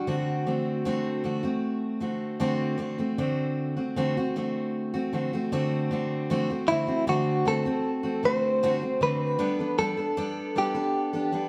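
In a straight 4/4 feel, this carefree, sunny acoustic pop excerpt sets a bright, clean electric guitar melody with tremolo over a full-bodied, picked steel-string acoustic guitar, both up front in a moderate large studio reverb as they move from D7 to Gadd9 at 9.4 seconds.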